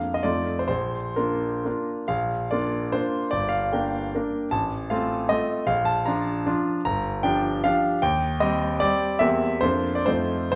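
Heard up front in a moderate recital hall, a clear concert grand piano carries deep bass and audible action noise in this short cut from a longer romantic classical piece. Playing alone from start to finish, the piano shapes a triple-time dance with dotted rhythms and flexible rubato, its wistful, nostalgic mood coloured by harmonies that drift from F7 through Gm and Cm/Eb before returning to F7 at 10.1 seconds.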